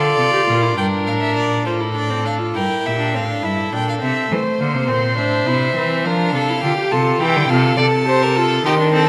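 Serious and driving, this baroque-style fugue for string quartet in G minor moves at 69 BPM in a straight 12/8, with a nasal, airy-bowed first violin carrying the melody high above a dark second violin, a smooth-topped viola with light vibrato filling the accompaniment and an up-front, rich cello anchoring the bass, all four in reedy, period-style gut-string tone and bathed in a wet scoring-stage reverb, in a passage cut from a longer piece.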